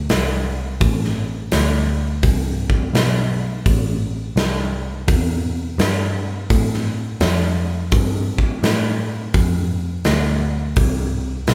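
A big acoustic rock drum kit stands out at the front of this short clip from a longer piece, its punchy kick, medium-tuned snare and hi-hat ringing in a big room from 0.1 seconds to the end at 11.5 seconds. Beneath it, a vintage muted picked electric bass carries the low end, its dark, round, foam-muted tone coming through an amp as it moves between A1 and A2. The style blends blues rock power trio with southern rock, set in A minor at 84 BPM in 4/4 with a swung eighth-note feel. The mood is smoky and heavy, captured as a band playing live in one room with light reverb.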